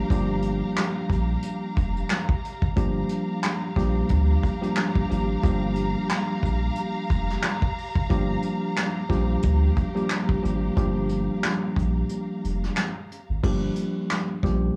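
A dark, moody boom-bap hip-hop excerpt, swung on the sixteenths, pairs a worn, slightly out-of-tune tine electric piano up front with a deep, round sub bass, a vintage brush kit with punchy kick, dark cymbals and handclaps, and lush bowed strings on plate reverb that sustain chords from an opening Gm7 through a break at 12.1 seconds, fading out at 13.4 seconds.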